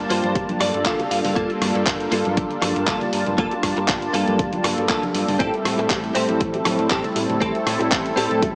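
A smooth, detuned sawtooth pad with chorus and analog delay sits up front in this groovy, sensual nu-disco passage at 119 BPM in G dorian, moving from Gm9 to Am7 at 5.4 s over a fat, saturated analog bass with filter sweeps, while a bright, twangy clean electric guitar plays a riff with a fill from 0.4 to 1.4 s, a gritty, tape-toned sampler-style kit of handclaps, hi-hat and rim click is soon joined by a punchy layered electronic kick, very quiet bongos and congas add color, and light reverb with a small-speaker character frames this short cut from a longer piece.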